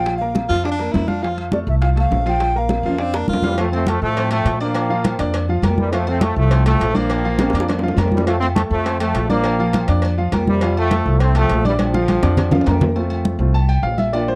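Festive, sunny salsa at a brisk 205 BPM in F major, cut from a longer piece, with a clear, present grand piano and a woody, thumpy pizzicato upright bass up front, over bright, damped congas, round, saturated bongos and cowbell, and distant, ringing timbales and agogo bells in the background. An airy baroque flute with a crisp attack carries the opening melody until 3.2 seconds, shadowed by a smooth baritone saxophone with vibrato, before a tight, brilliant trombone section takes over the tune from 3.4 seconds. Drum fills punctuate the Bb-to-F vamp, and the piano takes a solo from 13.0 seconds, all in a dry, close 1970s-style studio sound with small room ambience.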